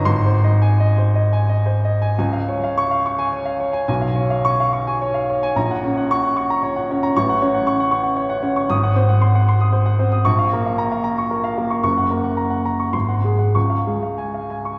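A warm, open baby grand piano with long sustain carries this hopeful romantic character piece for solo piano in a rubato 3/4, ranging from Gb1 to Eb6 and heard from further back in a concert hall with a wet, lingering reverb, as a brief opening gives way at 2.2 seconds to a second section that moves through Db7/Cb, Gb/Bb and Gbm/A before settling back on Db at 13.5 seconds in this fragment cut from a longer work.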